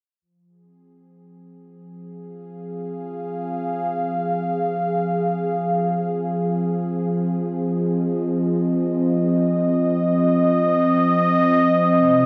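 Ambient and mysterious with a cosmic air, this excerpt is a single up-front analog synth pad, a detuned, warbling sawtooth sound with chorus and a resonant filter swell, holding sustained chords that fade in from 0.2 to 12.3 seconds inside a vast, echoing space of huge, wet reverb.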